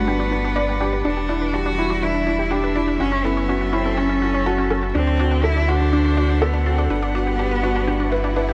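This moving, cinematic electronica piece at 123 BPM sets a soft, felt-muted upright piano riff with audible action noise over a deep, round sub bass with tube saturation, dark bowed string-quartet chords, a distant, expressive cello melody with vibrato and portamento, lush detuned sawtooth pluck arpeggios with digital delay in the background, and an electronic swell at 8.0 seconds, all set in a huge ambient reverb.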